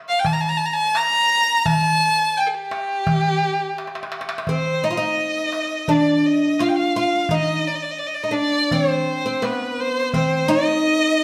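A stone room's reverb surrounds this live ensemble recording, cut from a longer piece, with the players heard together in one space. It is Arabic maqam music in a straight 4/4, longing and soulful in mood. A single bowed violin carries the melody from the opening moment, its tone rich and focused with vibrato, placed up front. A small metal-shelled darbuka sits lower in the mix, crisp and high in the live room, and plays a fill from 3.8 to 4.5 seconds. At 4.5 seconds the music moves into a new section as the oud enters on a second line, plectrum-plucked and fretless with double strings, its woody, deep voice also up front beside the violin.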